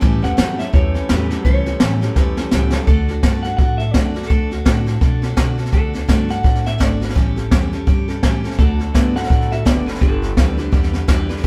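This upbeat, rollicking rockabilly excerpt swings its eighth notes at 168 BPM in 4/4, in D major, moving from A7 to D and touching G near its close. A brushed jazz kit sits up front with a high-tuned snare, boomy kick and hi-hat, its sound roomy and slightly distant, and it plays a fill from 2.2 to 2.9 seconds. Underneath, a pizzicato upright bass with gut strings gives a woody, thumpy pulse from the background. A full-bodied steel-string dreadnought plays picked accompaniment throughout. A bright, twangy electric guitar through a small old amp plays a slightly broken-up riff at the opening, drops out at 2.9 seconds and returns at 8.6 seconds. A second picked electric guitar carries the melody from the background, and the whole band sounds as if it is playing live in one room with light reverb.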